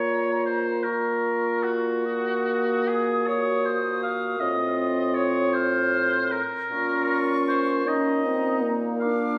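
Elegiac and yearning, this fragment of a slow romantic movement for wind quintet in B-flat minor drifts at 52 BPM in a rubato 6/8, with an airy, vibrato-laden silver flute singing the high melody over a second line from the oboe, a clear clarinet and warm French horn filling the accompaniment, and a mellow bassoon holding the bass, all heard from further back in a wet recital hall as the harmony moves from Bbm through Ebm/Bb and F7/A before settling on Bbm at 6.7 seconds.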